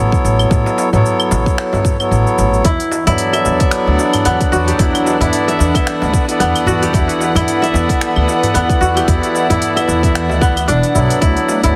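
This hypnotic, mystical stretch of organic downtempo opens on a reedy, nasal hand-pumped harmonium carrying the accompaniment up front, colored by digital delay and sidechain pumping, over a woody pizzicato upright bass with steel strings that pumps along with it. An electronic kick drum with a tight, tape-warm punch soon arrives alongside an organic electronic kit of claves, finger snaps, smooth hi-hat and shaker, both set in studio reverb, while a very quiet, crisp metal-shell darbuka adds deep, saturated percussion. At 2.6 seconds a bright, ringing kora enters with fingerpicked arpeggios trailed by digital delay, and a dark studio string section follows with soft-attack, floating bowed chords that also pump to the sidechain. The sixteenths carry a gentle swing, and the harmony moves from Aadd9 to a long Em9, turning to Dadd9 near the close. The sound sits in a small room with light reverb, but heavy multiband compression gives it a dense, radio-like squeeze.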